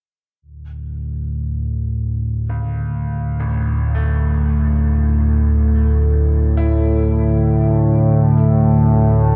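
An analog drone opens this short section cut from a longer dark ambient piece, arriving at 0.6 s and holding a D5 chord low in the range from D2 to A2. Its nasal sawtooth and pulse-wave tone evolves under pulse-width modulation, with a slow attack, long release and chorus, and it sits up front in the mix. At 2.5 s a bright concert grand piano joins with arpeggios spanning A1 to E4, fading in as the section continues. The piano sounds brilliant yet worn and intimate, with audible action noise, deep bass and tape echo, though it stays well beneath the drone. The whole piece floats in free time, tuned to A4 = 441 Hz, inside a huge ambient reverb with an 8.4 s decay. The production is dark and warm, giving an ominous mood.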